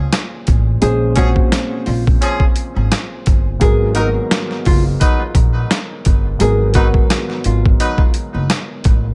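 A swung boom-bap groove at 86 BPM in 4/4 drives this gritty, reflective hip-hop excerpt, with a sampler-style drum kit sitting up front: compressed and pitched down, its thumpy kick, medium-tuned snare and hi-hat carry a gritty edge. Underneath, a pizzicato upright bass with steel strings plays a woody low line from the start, while a dark, mellow upright piano supplies filtered accompaniment, its audible action noise lending a vintage, intimate feel. The harmony moves from Bbm9 to Abm9 at 3.6 seconds. A fingerpicked nylon-string guitar with old strings enters at 0.8 seconds carrying a short classical-tinged melody through filtering and delay. From 1.2 seconds a horn section adds distant, roomy stabs with light vibrato, also filtered and echoed by delay, all set in a small room ambience.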